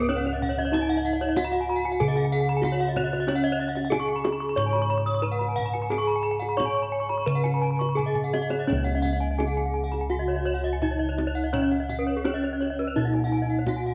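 Brilliant and shimmering, this Balinese gamelan excerpt moves at 84-94 BPM in straight 4/4, tuned to Db slendro. A dark, smooth bronze metallophone carries the melody while two bright, airy metallophones play arpeggios above it, their paired tuning setting up beats, and close-miked bossed gongs supply a round, full, up-front bass. A tight, saturated kendang adds compressed percussion and plays a fill from 8.0 to 8.7 seconds into a new section, while a moderate plate reverb lends the horn-mallet strikes a ringing tail.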